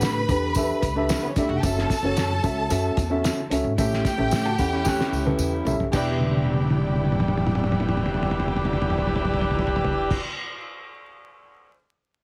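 Urgent and passionate, this fragment of uptempo 1960s-style soul rides on a muffled, cloth-damped drum kit with a fat snare and tight kick, a woody pizzicato upright bass, a dark, boxy upright piano, a jingly tambourine, and a lush bowed violin section sitting distant in the mix. A slightly broken-up electric guitar riff through a small old amp appears briefly from 4.5 s, and a mellow, tight saxophone section with light vibrato joins at 4.8 s. The whole track has the heavily compressed feel of an old radio broadcast, with vinyl crackle and light reverb, and the gritty drums carry on alone after the rest of the band stops at 10.2 s.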